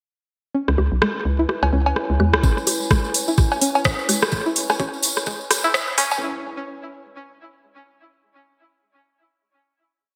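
Cool and clinical, this short minimal techno piece opens at 0.5 seconds on a C#m7 chord, with a twangy, string-like resonator pluck cycling a 10-step sequence that drifts against the bar through chorus and delay. A hollow FM bass rolls out a bouncy staccato groove in the intro. Beside it, dry analog rim clicks, bongos, woodblock and cowbell scatter blips in cross rhythm, touched with gated reverb and digital delay. A warbling, lo-fi pad of detuned, wave-folded tones eases in beneath, slowly shifting chords with a nostalgic haze, while pluck, pad and bass all breathe with sidechain pumping. At 2.4 seconds the build begins: the bass drops away as a layered, knocking four-on-the-floor kick arrives up front, joined by jingly hand-played tambourine sixteenths, a faint pulsing gated texture holding a high note, and, from 2.7 seconds, a programmed garage kit with metallic hats and rim backbeat, while a filter sweep moves across the pluck. 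The bright 1980s-style digital production sits in a moderate, lush hall reverb.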